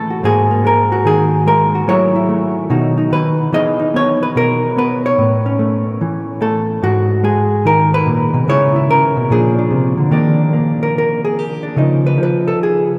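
Sophisticated and swinging, this short solo jazz passage is cut from a longer piece and rides a brisk 4/4 with a lilting swing feel. A single clean, hollow-body electric guitar carries everything, fingered and placed up front, with a dark tone that spans from its low register up into bright upper notes. The harmony moves through a rich chain of colors, from an opening G#sus2 through chords such as Emaj7, G#m9 and A#9, before shifting to Ebsus2 at 10.1 seconds and then to Dbadd9. That shift marks a new section where the guitar continues alone until the passage breaks off at 13.0 seconds. A drenched cathedral reverb surrounds the instrument, setting it in a vast, echoing space where each phrase lingers long after it is played.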